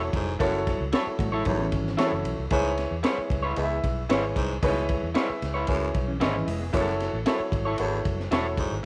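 A straight 4/4 groove at 114 BPM drives this urgent, passionate snippet of uptempo 1960s-style soul in C# minor, built on a crunchy, saturated breakbeat kit with a punchy kick, high-tuned snare and dark cymbals, under a round, foam-muted fingered electric bass and a woody, long-sustaining upright piano placed up front. A breathy, raspy baritone saxophone with vibrato carries the riff, while an electric guitar through a small old amp adds slightly broken-up, lo-fi stabs from 0.9 seconds. A clean, fingered second guitar with spring reverb plays brief riffs at 1.2 and 6.1 seconds over F#m7 and C#m7 chords, all in a small room with light reverb.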